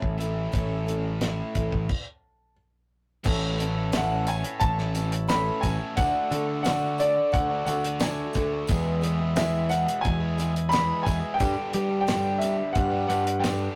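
A straight 4/4 pulse from a damped, dry 70s drum kit with a fat snare and tight kick drives this hopeful folk and heartland rock passage, cut from a longer piece, with a bright picked electric bass, a full-bodied dreadnought acoustic guitar and a biting, double-tracked overdriven guitar riff beneath an intimate, vintage grand piano melody whose action noise can be heard. As a stop from 1.9 to 3.3 seconds draws to a close, a jingly tambourine and a reedy, breathing hand-pumped harmonium join in the background, the harmonium holding sustained chords as the harmony moves from A through D and E to G. The sound is that of a rough rehearsal room, with tube saturation, faint mains hum and a moderate booth ambience.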